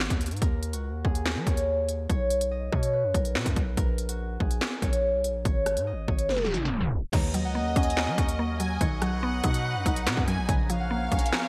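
Drill drums with a hard-clipped kick, crisp hats, a sharp snare and gated reverb open this cold, dark half-time hip hop cut at 143 BPM in Eb minor alongside a heavy, saturated 808-style bass; a ringing fingerpicked concert harp carries the melody from 0.4 seconds, and after a tape stop and drum fill a woody chorused synth pluck and an airy sweeping pad join at 7.1 seconds, followed at 7.3 seconds by a lush vibrato-rich violin section with digital delay, all in a bright 1980s-style digital production.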